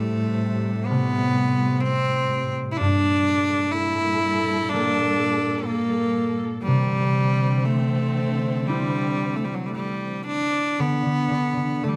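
A bowed solo cello carries the melody from the opening moment, joined at once by fingerpicked concert harp and a lush symphonic string section in this wistful, pastoral Celtic slow air. The tempo drifts freely around 56-64 BPM in 4/4, and the A4 = 439 Hz tuning sits a touch below standard pitch. The cello is bright, biting and slightly nasal, with an airy, earthy bow tone and light vibrato, and it sits up front in the mix. Beneath it the harp rings mellow and acoustic, while the string section adds soft-attacked, expressive sustained chords with vibrato, moving through Am7, Gmadd9 and Cadd9. At 10.8 seconds the strings drop away as the harmony settles on D5, leaving cello and harp to carry on until the cut at 12.0 seconds. Close, detailed microphones capture the players within a moderate recital-hall reverb.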